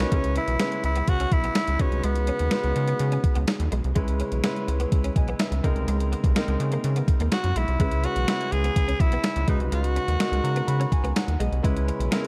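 A dark, warm production with light reverb and a digital ambience frames this short cut from a longer 1980s-style pop piece, nostalgic yet urgent over a straight 4/4 pulse. Up front, a raspy, gritty tenor saxophone with light vibrato and digital delay carries the forceful pop melody, playing a phrase at the start and returning at 7.3 seconds. Beneath it, an overdriven 12-bit drum machine with a thumpy kick, a medium-tuned snare and hi-hat sounds re-recorded in a large room. A rubbery, hollow square-wave bass with a plucked filter bounces up front. A clear, intimate grand piano with audible action noise and long sustain accompanies throughout, adding a fill at 10.2 seconds. Very quietly underneath, a picked, compressed and scooped electric guitar, clean and recorded direct, plays a riff as the harmony moves between C#m7, B6 and G#add9.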